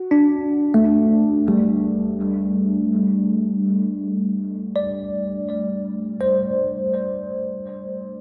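Floating in free time, this serene, peaceful ambient excerpt features a solo tine electric piano, bell-like and up front, ringing from G3 to F#5 through phaser and dub echo, with a D chord giving way to C5 at 1.4 seconds inside a drenched echo-chamber reverb whose echo-heavy mix tops out below 10.9 kHz.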